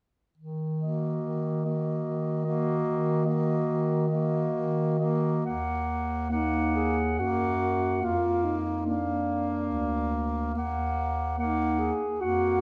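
A reverberant church-like space surrounds this short, elegiac excerpt of a classical single-reed quartet in Eb minor at 71 BPM in a rubato 3/4, where an up-front, warm bass clarinet sets the low line from 0.4 seconds before a dark, vintage clarinet takes the high melody, a mellow alto saxophone with light vibrato and a soft attack sings a second line, and the tenor saxophone holds a steady accompanying tone, all moving through a melancholic shift from Ebm to Bb/F and back.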